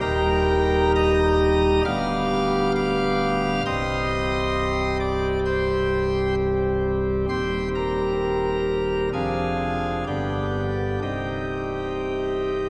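A pipe organ speaks from the very start, its cornet solo stop giving the line a nasal, baroque-voiced colour with a distinct chiff at the onset of its pipes, set up front in the sound. This is a grave, solemn classical chorale in C minor, moving at about 66 BPM in 4/4 with a rubato feel and tuned to A4 = 438 Hz. The organ spans a range from C1 to F6 as the harmony travels from Eb through G7/D to Cm, then on through Cm/Eb, Dm7b5/F and G before settling back on Cm at 11.0 seconds. A wet church reverb with a long 3.8-second decay surrounds the playing. Lossy compression artefacts mark the recording, which is cut from a longer piece and runs to 12.7 seconds.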